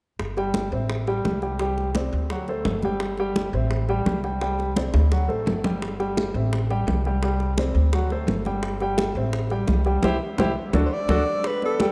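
Bathed in the long, echoing wash of a vast cathedral-like space, this sunny, sophisticated Afro-Cuban jazz passage pairs a woody pizzicato upright bass and an up-front grand piano with tight, high-tuned bongos and bright, thin-skinned congas in the background, cycling through Gsus2, Am7, Csus2 and D7 with a drum fill at 4.8 seconds and a band accent at 10.0 seconds, before a mellow, breathy alto saxophone with vibrato slips in at 10.9 seconds.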